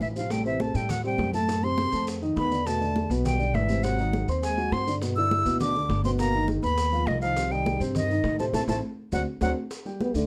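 A straight 4/4 pulse at 204 BPM drives this sunny, lively Afro-Cuban jazz excerpt in G major, with soft-handed congas and tight, high-tuned bongos in the background, grainy maracas sounding distant in a large room, and a woody, thumpy pizzicato upright bass on gut strings. Up front, a breathy, close-miked silver concert flute carries an expressive, tongued melody until 9.5 seconds, while a whispered trombone with light vibrato sings a second line and a dark, mellow grand piano with short sustain comps through chords such as Am7, F#dim, Em7 and G7alt. Drum fills open the passage and return near the end, where a band accent from 8.5 seconds pushes through D7 to a final G5, all in a dark, warm production with light reverb.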